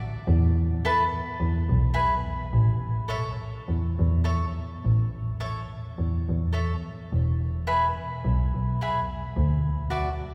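A bowed double bass opens at 0.3 s, rich and expressive, with vibrato and portamento, up front and close, joined at 0.8 s by a crisp, picked acoustic cavaquinho in this festive, proud mariachi-style folk fragment cut from a longer piece. The feel is lightly swung yet rubato, and the harmony moves from Esus4 to E and A before returning to E and closing on Dadd9. A long, wet cathedral reverb surrounds both players, lending the small duo the grand air of a church or concert hall.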